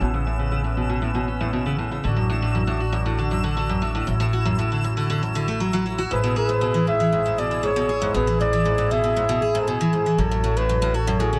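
In a straight 4/4 groove, this delicate, playful folktronica fragment pairs a woody pizzicato upright bass and bright, full-bodied picked steel-string guitar arpeggios, softened by a low-pass filter and trailed by digital delay, with reedy accordion chords carrying light tremolo tuning, vintage 12-bit sampler grit and its own low-pass filter, plus a faint, sparkling granular shimmer with built-in reverb, until a mellow jazz-style flugelhorn melody enters at 6.1 seconds and a bell-like celesta second line with tape echo joins in the background at 6.4 seconds, all set in a moderate studio ambience.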